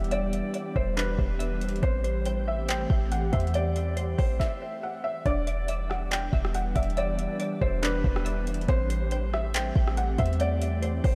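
This atmospheric cloud-rap cut, taken from a longer hip hop piece, sets a hazy, ethereal mood at 140 BPM in a half-time 4/4 feel, in E minor with tuning at A4 = 438 Hz. A felt-muted upright piano carries the melody up front with a soft, intimate, short-sustained tone and a touch of delay. Beneath it, an FM pad holds glassy sustained chords with slow attack, ensemble chorus, its own reverb and sidechain pumping. A crystalline, nasal wavetable pluck spins detuned arpeggios in the background through chorus and delay. A deep, boomy 808-style bass and a smooth R&B kit anchor the groove, the kit pairing a soft kick and woody snare with metallic hats, handclaps and rim clicks. The harmony moves between Em7 and Am7, a brief stop at 4.4 s gives way to the second section at 5.3 s, and the whole dreamy mix is soaked in a huge ambient reverb.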